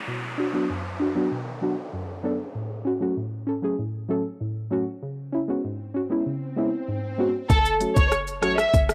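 Hypnotic and tough, this dancehall excerpt opens on deep, nasal chord stabs with chorus and cassette-tape grit, while an electronic downlifter and swell sit beneath the Bm, F#m/A and C#m7 changes. At 7.5 seconds the groove arrives: an electronic afro-pop kit with a knocking kick, smooth hats, rim click and shaker, a punchy, tight 808-style bass, and faint acoustic maracas in the background. Up front, a lush, bowed violin section carries the melody with vibrato and portamento, its cassette-tinted tone set in the light reverb and digital ambience of a home cassette recording.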